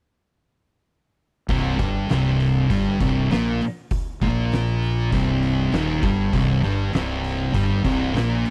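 Stoner and doom metal at 99 BPM in C minor, this hypnotic, brooding fragment of a longer piece begins at 1.5 seconds with two dark, up-front fuzz guitars riffing over a growly, punchy overdriven bass and an oversized low-tuned drum kit with a boomy kick and fat snare, all captured in a dry, close 1970s-style studio sound that holds on a C minor chord.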